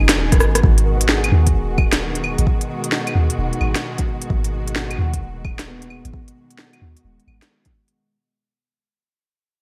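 An up-front organic electronic drum kit stands out in this ghostly, wistful future garage fragment, its woody snare, crisp hats, cabasa, claves and rim click carrying a tape-warm tone, gated reverb and the sound of a small room. A short drum fill arrives at 0.3 seconds as a deep, layered electronic kick joins, and the groove swings its sixteenths in 4/4 over a single G#m7 chord. Beneath, a soft, round, dark 808-style bass with a sine-like, fast-attack, decaying tone carries tube saturation and is pumped by sidechain, with a filter sweep on it from 0.6 seconds. Muted, con sordino studio strings sustain veiled, bowed chords with vibrato and a smooth top, also pumping, while a barky, clean tine electric piano heard through a combo amp sits in the background with lush chorus, delay and sidechain pumping. The bright 1980s-style digital production adds light reverb and digital ambience, and the whole piece fades out from 0.6 seconds, cut from a longer work.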